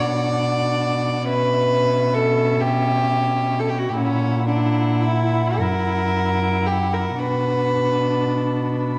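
In a rubato 6/8 at 35-47 BPM, counted in dotted quarters, this slow, lyrical romantic movement for string quartet in B minor moves serenely from Bm through C#m7b5/B, F#7/A# and F#7, then settles back on Bm at 7.2 s. A dark, woody violin sings the melody with vibrato from the background, while an up-front second violin plays a pure, floating sul tasto line until 8.8 s. Alongside them, a rich viola gives intimate, airy-bowed accompaniment with light vibrato, and a warm cello holds the bass with a soft attack, all within a dark, warm production and moderate concert-hall reverb.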